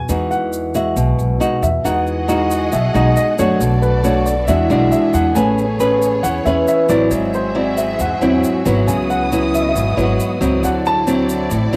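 A dark, mellow baby grand piano carries the melody from the opening moment of this relaxed, sophisticated bossa nova, joined at once by a fingerpicked nylon-string guitar and a pizzicato upright bass at a straight 137 BPM in 4/4, in E major. The piano sounds intimate and natural, with audible action noise and short sustain. The guitar, played on old strings, is small and woody and sits up front, a touch louder than the other parts. The bass is acoustic and warm, with a steel-string edge, and a grainy, bright egg shaker sits close but low in the mix. At 1.8 seconds a lush symphonic violin section enters with bowed, sustained chords that have a soft attack, expressive vibrato and a smooth top. Over a sophisticated progression that opens on Emaj9 and moves through Amaj9, G#7alt and C#m11, the piano, guitar and violins carry a cassette-tape colour, all in a moderate, home-recorded room, in this short excerpt cut from a longer piece.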